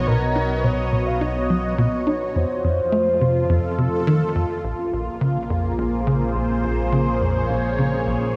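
A lush, thick unison pad, a horn-like synth lead, a tight sequencer bass and an analog drone all sound together from the start of this cosmic, luminous piece of ambient, sequencer-driven space music, moving at 105 BPM in a straight 4/4. The bright, up-front pad holds sustained, detuned chords with chorus and phaser, while the mellow lead carries a round, vibrato-tinged melody through chorus, phaser and analog delay until 4.1 s. Underneath, the punchy sawtooth bass drives a riff with a moving notch filter and fast, decaying attacks, and the drone adds an evolving, ring-modulated pulse-wave layer. The chords pass from Bmaj7 to F7 before settling on Bbm7 as the second section begins, and from 4.8 s a soft, dark pluck adds very quiet arpeggios on Db4. The recording sits in a wet plate reverb with the warbling pitch drift of worn cassette tape, and it is cut from a longer work.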